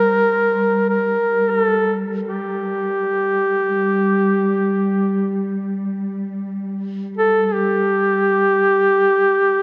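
Caucasian folk lament, mournful and solemn, in which a solo duduk carries the melody up front with a warm, vibrato-laden folk voice and scooped notes. Beneath it, a bowed cello section holds a low drone, its tone dark and woody with a smooth, lush top. Long cathedral reverb, about 5.1 seconds, surrounds the performance, and the recording is cut from a longer piece.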